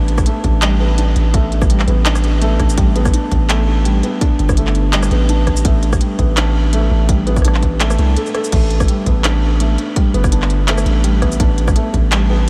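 Light reverb and a digital ambience frame this heavy, tense excerpt of half-time drum and bass at 167 BPM in 4/4, with a gentle 54% swing on the sixteenths. A felt-muted upright piano plays soft, intimate arpeggios between G3 and A4 on an Asus2 chord throughout, its hammer and key action noise audible and its tone passed through an analog delay. Underneath, a deep, long 808-style bass sits up front, its sine tone striking with a fast attack and decaying mellowly in the low register from G1 to C2. An electronic kick drum with a hard-clipped, tape-tinged punch enters at 0.2 seconds and runs to 12.0 seconds. An industrial drum kit of crash cymbal, handclaps, crisp hi-hats, rim clicks and shaker sits lower in the mix, and a brief break at 8.2 seconds interrupts the groove before it resumes.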